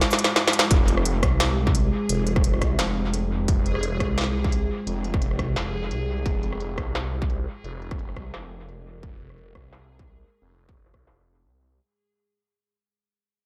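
Half-time drum and bass with a spacious, tense mood, cut from a longer piece and built around a dark F minor add-nine chord held by a deep, moody ambient pad that sits in the background with chorus, reverb and sidechain pumping. It opens with a short break and drum fill from the industrial kit, whose clanging snare, crisp hats, rim click and shaker sit up front, tape-warmed and re-recorded in a large room, with low-pass filtering and dub echo. At 0.7 seconds a distorted electronic kick arrives with the same roomy character, alongside a swirling, thick, detuned saw bass that is saturated, phased and placed up front. A reversed, dreamy granular texture swells in at 1.8 seconds on a single bright note, soaked in its own reverb. The mix leans heavily on echo rather than reverb, and a filter sweep runs across the drums as the whole passage fades out.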